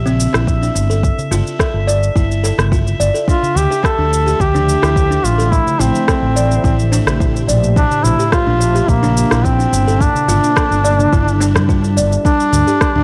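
Organic downtempo in D minor at 107 BPM, warm and meditative, where a round, dark fretless bass, a glassy drifting harmonics texture, a buzzing woody kalimba with analog delay, a soft electronic kick, an organic electronic kit of cabasa, rim click and toms, and a crisp, very quiet darbuka open this excerpt before a close-miked folk-style duduk with vibrato takes the melody at 3.3 seconds and an ethereal, detuned pad with phaser and sidechain pumping arrives at 4.4 seconds over Dm7, Am7, Bbadd9 and Gm7 in a dry, gritty recording with light digital ambience.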